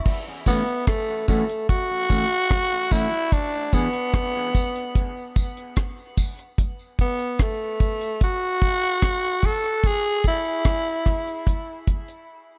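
Spacious and deep, this dub reggae excerpt moves at 74 BPM in F# minor, built on a dry, dark drum kit with a tight kick, rim clicks, hi-hat and crash sitting up front. A growling tenor saxophone takes the solo melody with raspy vibrato and scooped notes, treated with dub echo, while a clean, fingered electric guitar and a vintage, band-limited tambourine add echoing touches early on. The harmony moves from F#m7 to E7 before the chords drop out at 5.0 seconds, and the tambourine stops at 6.4 seconds, leaving drums and sax in a small room until a brief break at 12.3 seconds.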